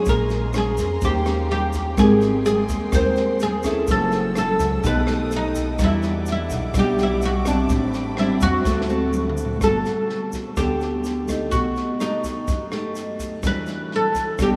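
A straight 4/4 bossa nova groove at 126 BPM sets a relaxed, sophisticated mood in this short piece cut from a longer work. The compact cocktail drum kit sounds dry, with a punchy kick, rim clicks, toms and a high-tuned snare, while a grainy, bright egg shaker sits in the background and a thumpy, woody upright bass plucks gut strings below. Up front, a fingerpicked classical nylon-string guitar carries the accompaniment, and a plectrum-plucked fretless oud with deep double strings takes the melody. A lush, bowed symphonic string section adds soft-attack sustained chords with expressive vibrato in the background until 9.6 seconds, where a drum fill from 8.7 seconds leads into a new section. The harmony moves through rich jazz chords such as Bbm9, Abmaj9 and B7b13 before settling on Gmaj9 and Em9, while a vast, echoing cathedral reverb surrounds the ensemble.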